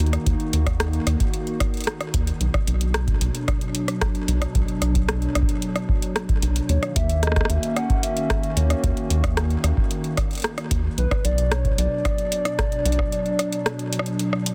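Lightly reverberant and densely limited, this glitchy, eerie IDM excerpt opens on a hollow, flute-like pad with chorus and sidechain pumping, a rubbery square bass with a resonant filter pluck sitting up front, and a dry analog drum machine of metallic hi-hat and rim click with a clipped snare and digital delay, joined by a deep electronic kick at 0.3 seconds. The chords move between Ebm and Bm, shifting to Ebm7 at 6.7 seconds, where a warbling, nostalgic lead with vibrato, chorus and delay enters above. The bass drops out at 13.0 seconds and the kick just after, so the pad, drum machine and lead carry on to the end.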